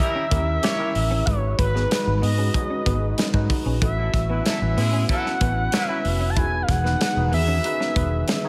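Polished 1980s jazz-funk pop at 94 BPM, upbeat and urban, cut from a longer piece, with a smooth, vibrato-tinged sawtooth synth lead carrying the melody through chorus and echo while a tight, vintage horn section adds a second line until 6.0 s. Underneath, a worn, barky tine electric piano with light overdrive and chorus comps over chords moving from D#7b9 through G#m7 and A69 to Emaj7, supported by a faint, warbling detuned analog pad and a very quiet clean fingered guitar riff. A punchy, foam-muted fingered bass entering at 0.3 s and an up-front acoustic kit with a tight kick and rolled-off top drive the groove in light studio reverb.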